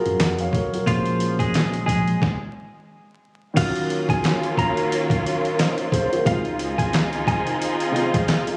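Captured on a phone in the room, this excerpt of dark, tough boom-bap hip hop carries vinyl crackle, compression, studio reverb and a light digital ambience. At 89 BPM in 4/4 with a swung sixteenth feel, a gritty, pitched-down sampler-style drum kit sits up front, its thumpy kick, medium-tuned snare, hi-hat, handclaps and crash cymbal re-recorded in a large room. A shadowy baby grand piano plays ninth chords in Eb dorian with a cassette-tape colour, while a mellow tine electric piano, heard through its built-in speakers, supplies the bass line. A clean, picked semi-hollow guitar carries the melody with a harmonic tremolo, and the music halts in a stop from 2.2 to 3.6 s. As the stop ends at 3.6 s, a bowed, lush string section arrives with vibrato, holding sustained chords while woody stabs sit in the background through an analog delay.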